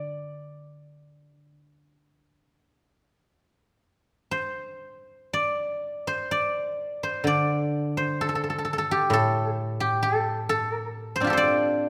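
Rubato and unhurried at around 55-67 BPM in 4/4, this contemplative, longing fragment of Chinese traditional music features a solo guzheng, plucked with fingerpicks and sitting up front, its silvery, ringing tone spanning A2 to D5 in the D yu mode across 11.9 seconds, shifting into a new section at 5.3 seconds amid a moderate scoring-stage reverb.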